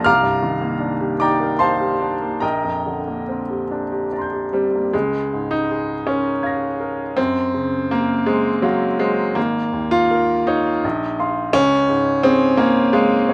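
This is a classical, impressionist solo piano piece with a dreamy, serene mood, moving in a gentle triple metre with a free, rubato feel. A single baby grand piano carries everything, ranging from Ab1 up to Bb6. Its tone is clear and intimate, with long sustain, audible action noise, and an up-front placement, all set in light reverb. The opening drifts through a Cm11 to a Bb69 before the harmony shifts at 4.9 seconds to a new tonal centre, built on Db6 and a Gbmaj7#11. Suspended chords follow, and the passage comes to rest on Db at 11.5 seconds, an excerpt cut from a longer piece.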